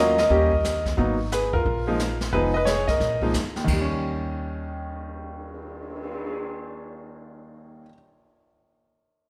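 A bright baby grand piano carries the melody up front in this short cut from a longer jazz piano trio performance, its brilliant, intimate tone spanning a broad range and carrying audible action noise. The mood is smoky and cool, with a swung eighth-note feel in 4/4. Beneath it, a pizzicato upright bass with steel strings gives a woody, thumpy foundation in the low register. A jazz brush drum kit with dark cymbals, a medium-tuned snare and a punchy kick enters at 0.2 seconds and drops out at 6.3 seconds, adding brushed snare, hi-hat, crash and a cymbal swell. The harmony moves through dominant and minor-ninth colors, opening on Eb7 and returning to it at 3.7 seconds as a second section begins. A moderate concert hall reverb surrounds the trio, lending the natural acoustic sound of a church or hall.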